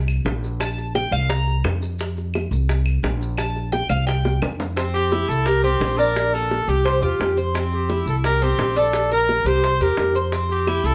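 A moderately roomy studio sound frames this sunny, relaxed Cuban son and guajira excerpt, where a metallic, picked tres with doubled strings takes the solo spotlight over woody pizzicato upright bass, tight high-tuned bongos, grainy maracas and background claves, until a drum fill at 4.3 seconds leads into a punchy, vibrato-laden trumpet melody with plate reverb from 4.9 seconds.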